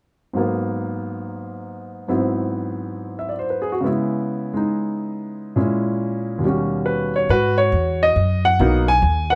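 A jazz piano trio excerpt in G# minor, swinging at 138 BPM in 4/4 with a cool, late-night mood, cut from a longer piece. A warm baby grand piano carries the melody from the start, sitting up front with a natural tone and a plate reverb. Its lines range from D#2 to G#5 over a progression that moves from G#m9 through G#7alt and C#m7 to an A#m7b5 and D#7alt turnaround. At 7.3 seconds an acoustic upright bass enters, played pizzicato on steel strings with a woody, up-front sound, landing as the harmony returns to G#m7. A light reverb sits over the whole, and both parts play through to the end at 9.4 seconds.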